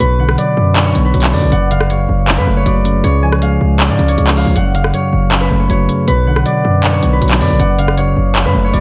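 Melancholic and hard-hitting, this short trap cut at 158 BPM in a half-time feel sets a ringing, thumb-plucked concert harp melody and a bell-like tine electric piano, both softened by a low-pass filter, over a punchy, heavy 808-style bass and an up-front trap kit of crisp hi-hats, handclaps and rim clicks, all moving through Bm, F#m and C# in F# harmonic minor.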